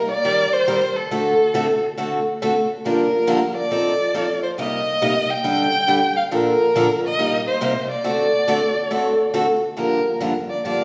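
A solo violin opens this swinging, fiery jazz excerpt in G minor, with a picked steel-string acoustic guitar joining at 0.2 seconds to supply the accompaniment at 138 BPM in a 4/4 swing feel. The bowed violin carries the melody, singing with vibrato and portamento in an expressive, warm tone that sounds both up front and slightly distant. The guitar has a bright, boxy parlour character, its picked chords moving through changes such as Eb6, D7, Gm7 and Cm7 before landing back on Gm7 at 9.8 seconds. A recital hall reverb gives the pair a wet, churchlike resonance. The passage is cut from a longer piece, and both instruments play through to its end at 10.8 seconds.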